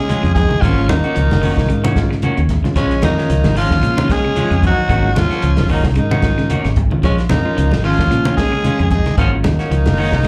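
Driving and funky, this afrobeat excerpt moves at 112 BPM in Bb minor, swinging lightly on the sixteenths as it alternates between Bbm7 and Ab9sus4, heard as a live gig through the venue's PA with club reverb. A growling, raspy tenor saxophone carries the melody with slapback echo, backed by a bright alto saxophone in the background and a tight, very quiet trombone section, while a round, foam-muted fingered bass and a dry, dark soul drum kit with a tight kick anchor the groove. A twangy, slightly broken-up guitar plays arpeggios from the very start, while ringing low-tuned congas with slapback echo, clean guitar stabs, and a worn, reedy electric piano with fast tremolo fill out the texture from about 0.1 seconds on.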